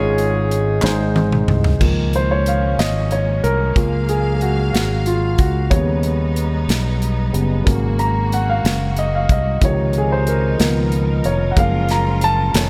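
Hopeful and uplifting, this slow gospel passage in 6/8 at 61 BPM opens in Db major with a smooth-topped horn section stating a brief melody over warm grand piano, punchy fingered electric bass and an airy, polished drum kit. A hollow group handclap sits in the background during a drum fill from 0.8 seconds. At 1.8 seconds the piano takes a solo that runs to the end of this excerpt, backed by lush, bowed strings with vibrato and light studio reverb, moving through rich chords such as Gbmaj9/Db, Eb7alt and Dbmaj9.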